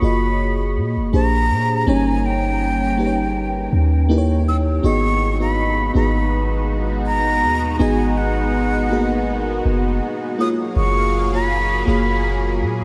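A 81 BPM R&B groove in 4/4 with a light 16th-note swing carries this longing, moody G# dorian excerpt, where a breathy, mellow silver flute with unsteady vibrato sings the melody through analog delay over a dark, chorused FM electric piano with a soft pad layer and a deep, boomy 808-style sine bass, joined at 5.6 s by a thick, detuned unison pad with phaser, all soaked in a huge, dreamy reverb as the chords move from F#maj9 through D#7b9 to G#m7 and back to F#maj9.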